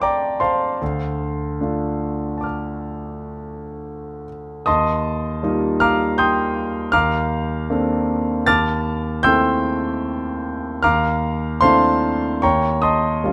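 Luminous and serene, this short section of a longer impressionist solo piano piece drifts at 77 BPM in an uneven 5/4, its pulse stretched and relaxed by rubato. A clear concert grand carries everything alone across the full 13.3 seconds, reaching from a deep bass D2 up to a bright A6. The harmony glides from an opening F6 into Dm7, then through colorful extended chords such as Ebadd9 and Bbmaj9/Eb. Later chords like Am7/Eb and Dm9/Eb sit over an Eb bass before settling onto Eb7. Close, detailed microphones place the instrument up front and intimate, catching the audible noise of its action alongside a polished tone with long sustain. A light reverb gives the notes a gentle halo.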